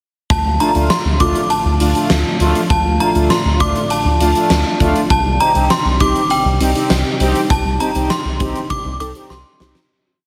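A melancholic, cool synth-pop piece opens on a chiming, inharmonic FM synth melody built from hook phrases, treated with ensemble chorus, phaser, tremolo and analog delay, over a rubbery, hollow square-wave bass sequence and a huge, up-front arena drum kit with a punchy kick and fat snare driving a straight drum-machine beat. Brassy, wave-folded analog synth brass adds off-beat triad chords with a filter sweep and vibrato, while an organ-like vintage pad in the background carries sustained chords through phaser and ensemble chorus, moving from Dm to Cmadd9. The heavily compressed, radio-style mix sits in a lush hall reverb, fading out from 7.5 seconds as a drum fill closes the piece at 9.3 seconds.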